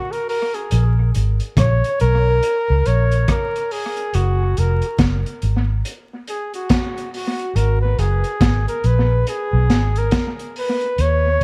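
An echo-heavy mix with light reverb and vinyl crackle frames this uplifting, laid-back roots reggae excerpt at 70 BPM with a swung 16th feel: a close-miked flugelhorn with light vibrato and tape echo solos from the very start, a gritty, saturated breakbeat kit of hi-hat, tight kick, rim click and high-tuned snare sits up front through analog delay, and a round, punchy, foam-muted electric bass enters at 0.7 seconds under chords moving from A#m to F#maj7sus2/E# to G#m.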